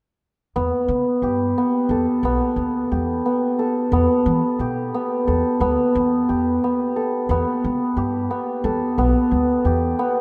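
This fragment of contemporary chamber music moves in 5/8 at 178 BPM, counted in eighths, with an urgent yet pensive mood in E minor. From 0.6 seconds, a shimmering, hammered cimbalom sits up front playing ringing arpeggios through Em and Gadd9/E before returning to Em, while a pizzicato upright bass adds a woody, thumpy low line beneath it. A vast cathedral reverb wraps the pair in long, echoing decay.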